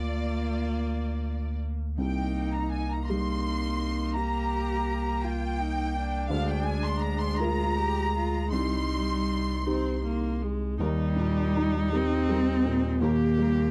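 A lush violin section carries the melody with focused vibrato in this fragile, melancholic neoclassical piece for piano and strings, set in C minor and moving in a rubato 6/8 at 54 BPM. Beneath it, a rich solo cello sings a second line, while a clear viola and a soft, intimate felt-muted upright piano fill out the accompaniment, and a round, sine-like sub bass sits deep and up front. The dry, close recording has a 1970s studio character, and the harmony settles onto Eb at 10.8 seconds as a new section begins.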